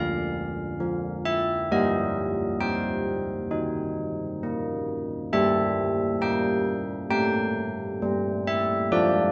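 A carillon plays alone and up front, its bronze bells ringing bright with a distinct minor-third overtone and the character of a worn iron clapper. This short classical passage, cut from a longer tune for church bells, moves at a stately 67 BPM in a straight 4/4 and feels wintry and solemn. The bells span from D3 up to G5, moving from a Bb chord at the start to Eb over G at 1.7 seconds, then settling on an open A fifth over G at 5.3 seconds. Close, detailed microphones capture the bell tones clearly, while a moderate recital-hall reverb lets each strike linger and fade into the room.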